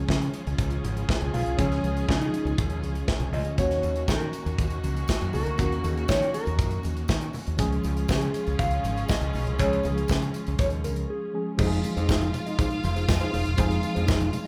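An up-front studio drum kit drives this danceable, sultry disco cut at 120 BPM in a straight 4/4, its medium-tuned snare, tight kick, hi-hat and crash sitting beside a bright, punchy fingered electric bass. A worn, slightly out-of-tune electric piano with light overdrive comps throughout, while a dark, clean, fingered electric guitar joins at 1.3 seconds, and a clean guitar solo runs through the opening stretch before a brief break. Very quiet low-tuned congas and a jingly tambourine, the latter arriving at 3.6 seconds, add a faint percussive shimmer. A clear, lush bowed string section holds sustained chords over Db and Ebm7 harmony until 11.6 seconds, when a richer string section with vibrato takes up a higher second line as the music moves to Fm7. Light reverb gives the band the sound of playing live together in one room, and the excerpt is cut from a longer piece.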